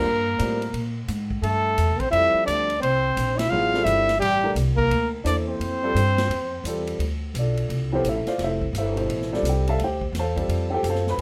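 A moderate studio reverb gives this modal jazz excerpt a natural sense of space, with the drum kit sounding acoustic and set in a big room. At 172 BPM in 4/4 with a swung eighth-note feel, the mood is cool and hypnotic, moving from Gmadd9 and Fadd9 harmonies into D dorian at 7.0 s, where Dm9 and Fadd9/D take over. A warm, up-front trumpet carries the melody with light vibrato, while a clear, punchy trombone plays a forceful second line beneath it with its own vibrato; both horns stop at 6.8 s. The woody, vintage upright piano accompanies throughout with a smooth, long-sustained tone, and the pizzicato upright bass, steel-strung and up front, anchors the low end. Entering at 0.4 s, the swinging big-band kit keeps time on hi-hat, ride, a medium-tuned snare and a punchy kick, leaving piano, bass and drums to close the passage.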